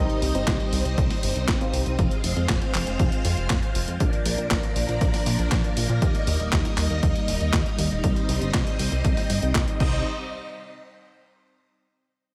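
A straight 4/4 italo disco groove at 119 BPM in C minor, with a punchy, tape-warm electronic kick arriving at 0.5 s beneath a clean 12-bit drum machine's sampler-style snare, handclaps, hi-hat and crash, both bathed in studio reverb. A glossy, chorused synth bass anchors the Cm, Fm, Bb, Eb progression while a lush vintage string machine holds soft-attack sustained chords through phaser and ensemble chorus. A dark, intimate baby grand with audible action noise adds tape-echoed stabs only until 2.0 s, giving this melodramatic, danceable cut its moody opening.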